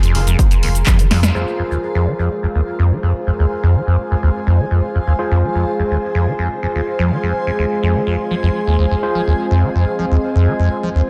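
An echo-heavy mix with moderate spring reverb opens this trippy, driving acid house excerpt on a drop, where a punchy analog drum machine of snare, handclaps, hi-hat and cabasa, a deep, round analog bass and an up-front, tape-tinged electronic kick sit beneath a squelchy, resonant liquid acid bass riff with phaser, overdrive and dub echo and a blurred, evolving granular cloud pad; a drum fill and band accent then lead at 1.3 s into a stretch where the acid riff and cloud pad carry on beside the gritty, barky stabs of an overdriven tine electric piano in the background under a filter sweep, joined at 1.7 s by a nostalgic, detuned warbly tape-like pad, with the acid bass and both pads pulsing to sidechain pumping.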